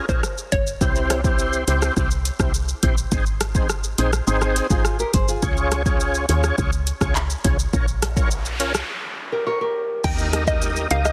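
A gritty, overdriven tonewheel organ with slow rotary swirl and key click opens this tough, hypnotic 104 BPM dancehall excerpt over Bbm7, joined at once by a brief hollow, warbling square-wave pluck, a dark, woody FM bass and an up-front electronic afro-pop kit of deep kick, metallic hats, rim click, shaker, handclaps, crash and a softly clipped snare, while small, dark nylon-string guitar arpeggios drift in twice, a noise sweep and downlifter enter at 8.1 seconds, the drums drop out from 8.9 to 10.0 seconds, and the detuned pluck returns at 10.0 seconds on an Eb chord in a dense, heavily limited mix with light reverb.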